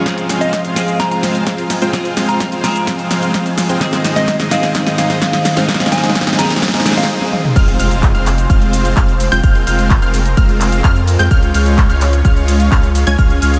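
Drenched in a huge, dreamy reverb, this powerful, emotional piece of festival progressive house in F minor at 128 BPM opens with a build-up where a bright, twangy twelve-string electric guitar, a soft background supersaw pad and a thick, detuned supersaw riff all pump with the sidechain beneath a round, keys-like FM lead. A punchy, up-front electronic kick and a house kit of crash, handclaps, shaker, snare, toms and bright hi-hats drive a long drum fill, with a very quiet electronic riser and impact, until the music stops briefly at 7.1 s. The drop at 7.6 s brings a deep, saturated sine sub bass and a high, wave-folded unison pluck playing arpeggios, both pumping with the sidechain as the chords move from Fm to Db.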